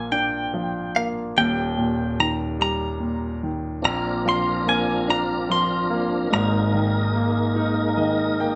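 Six-eight pop ballad in Bb mixolydian, swaying and heartfelt at 48 BPM, heard here as a short cut from a longer piece. A bright, twangy clean electric guitar carries the melody with tremolo over a clear, polished baby grand piano accompaniment, and a lightly overdriven tonewheel organ enters at 3.8 seconds with sustained chords, key click, chorus vibrato and a slow rotary speaker. The band plays live in one room with a wet studio reverb, and the piano closes with a fill from 7.6 seconds as the chords move from Bb through Eb and Bbadd9 to Absus2.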